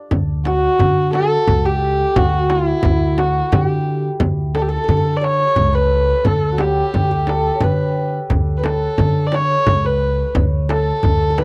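A dark, bowed kamancheh leads up front with vibrato and portamento from 0.5 seconds in this hypnotic, melancholic Persian modal ensemble at 88 BPM in 3/4, over a shimmering, hammered santur with slapback echo, a growly pizzicato upright bass, a small, bright frame drum and a tight, saturated tombak set in the background, captured in a dry, close 1970s-style studio sound with light reverb.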